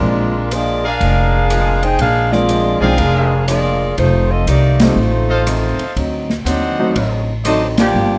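A mellow saxophone section with vibrato carries the melody up front in this energetic, brassy big band swing excerpt at 121 BPM, its sound set in plate reverb over a Bb7, F7 and D7b9 progression. A woody, growly upright bass, a clear grand piano with audible action noise, and a boxy picked archtop guitar sitting in the background fill out the accompaniment, while a swinging drum kit with dark cymbals and a punchy kick drives the groove. A brilliant trumpet section adds stabs, and the full band hits accents at 4.7 and 7.7 seconds within a dark, moderately reverberant club sound.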